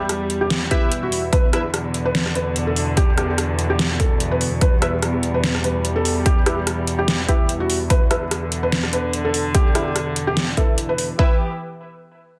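A dense, heavily limited modern mix with light reverb carries this menacing, chaotic stretch of heavy wobble dubstep in E minor at 146 BPM, with a swung, half-time feel. A dark, nasal, reedy chamber string section holds bowed chords that pump with sidechain, while an up-front overdriven electronic kick and a dubstep kit of deep snare, metallic hats and rim clicks drive alongside. A soft, felt-muted upright piano with audible action noise traces a tape-echoed melody, and detuned supersaw stabs with lo-fi 12-bit grit and a filter sweep flash in at 0.7 seconds before returning from 4.8 seconds onward.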